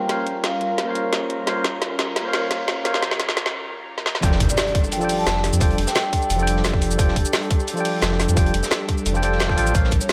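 A deep, sine-like sub bass with octave anchors this lush, dreamy liquid drum and bass excerpt, where a tine electric piano with tape echo, an airy, breathy pad with chorus, sampler grit and sidechain pumping, and mellow soft-mallet vibraphone phrases through analog delay float in plate reverb through a filtered build-up, fills and a short break before the drop at 4.2 seconds brings an electronic impact, a tight up-front kick and a gritty, saturated breakbeat kit tucked behind the woody snare and metallic hats of the main drum kit.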